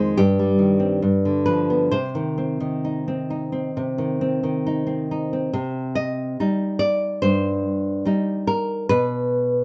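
A nylon-string guitar, fingerpicked in a classical manner and placed up front, carries this intimate, passionate romantic piece entirely on its own. Its tone is full-bodied and warm, ranging from F2 up to Eb5. The playing is in 4/4 but flows with a free rubato feel, giving the phrases an expressive, breathing quality. The harmony opens on Cm/G and moves through G7 to settle on Cm, and the same passage is stated a second time from 5.5 s before the chords fall away at 8.9 s. A moderate studio reverb adds gentle depth around the instrument in this short passage cut from a longer piece.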